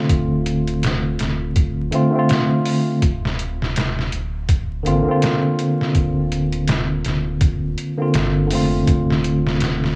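A clean tine electric piano, played through a combo amp with harmonic tremolo and tape echo, opens this hypnotic, cinematic trip hop excerpt at 82 BPM, moving from Dm7 to Bbadd9/D at 3.0 seconds and back to Dm7 at 8.9 seconds. A deep, round dub sub bass sits underneath, while an up-front, pitched-down sampler-style kit with a thumpy kick, medium-tuned snare and hi-hat carries gritty 12-bit character and a swung 16th-note feel. Vinyl crackle and a small, lightly reverberant room frame the sound.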